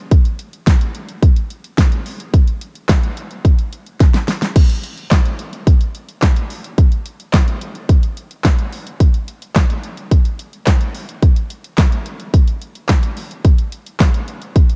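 Nostalgic and upbeat, this straight-feel pop groove at 108 BPM in 4/4 is carried by an electronic, layered drum kit that plays from 0.1 to 14.8 seconds, with a punchy kick, a fat snare, warm hi-hats, handclaps and crash cymbal sitting up front. A drum fill at 4.0 seconds leads into a new section at 4.6 seconds. The production is dark and dry, with little reverb.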